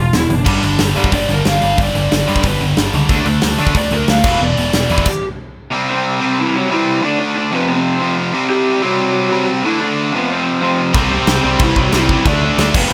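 A lo-fi, overdriven lead guitar through a small cranked amp solos through the opening of this rowdy, upbeat punk rock excerpt, backed by a bright, double-tracked stack guitar riff up front, a distorted high-gain second riff guitar, a growling picked bass and a big, punchy acoustic drum kit, with the bass, drums and heavy guitar dropping out around 5 seconds and crashing back in at 10.9 seconds in a dry mix.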